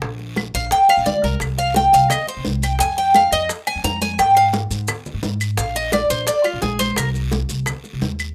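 A dark, thumpy pizzicato upright bass on gut strings opens this sultry, danceable Cuban son and guajira excerpt at 173 BPM in C minor, alongside ringing, high-tuned, soft-handed congas, tight, hard-struck bongos and a raspy guiro in the background, with woody claves joining at 0.4 seconds and the up-front, metallic, double-stringed Cuban tres taking a picked arpeggio solo with slapback echo from 0.5 seconds, while grainy, mellow maracas enter behind it at 1.4 seconds as the chords move from Bb through Cmadd11, Fm11 and Bb9 to Cm in a rough home demo mix with moderate studio reverb.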